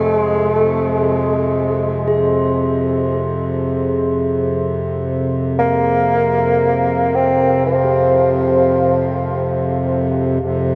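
A solo bassoon carries the melody up front in a classical style, its tone distant and roomy with a light vibrato, moving between F3 and C4 and trailed by tape echo. Beneath it a pedal harmonium holds a reedy, breathing drone in F minor from the start, low and dark, sitting just as close in the mix. At 2.1 seconds a bronze singing bowl enters in the background, a ringing, metallic shimmer struck with a suede striker, its slow beating adding a smooth, shadowy glow. This is meditative world music in free time, spacious and haunting, soaked in a huge ambient reverb with an 8.3-second decay that gives it a dreamy float. The bassoon falls away at 9.6 seconds while the drone and bowl carry on to the close of this fragment, cut from a longer piece.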